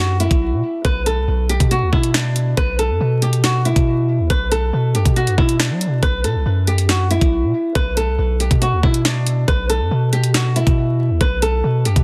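A fingerpicked acoustic flamenco guitar opens this tense, dark drill track, its melody in B minor muffled by a low-pass filter and trailed by tape echo, while a deep, sine-toned 808-style bass with a fast attack and long decay sits underneath on a B5 chord. At 0.2 seconds an up-front electronic drill kit enters with a knocking kick, sharp snare and bright hi-hats, their tape-warmed tone re-recorded in a small room, driving a half-time feel at 139 BPM tuned to A4 = 444 Hz. The dense, heavily limited master wraps everything in digital ambience and vinyl crackle, and the passage is cut from a longer piece.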